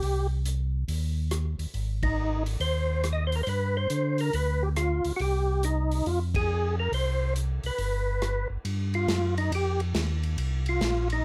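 A lightly overdriven, percussive tonewheel organ carries the melody in this smoky, soulful soul jazz organ trio excerpt, its full tone shaped by third-harmonic percussion, chorus vibrato and a stopped rotary speaker, and it sits up front in the mix. A second tonewheel organ handles the bass line, sounding mellow, round and dark, with a clean tone, chorus vibrato and a slowly turning rotary speaker. Further back, an acoustic soul drum kit in a small room swings in 4/4 with hi-hat, ride cymbal, rim click, snare and kick, giving a muted-top sound with dark cymbals, a medium-tuned snare and a tight kick. The harmony moves through a minor-key progression, and the whole band hits accents together at 2.0 and 6.3 seconds. From 8.7 seconds the organ steps into a solo over a minor seventh chord, all of it framed by light reverb.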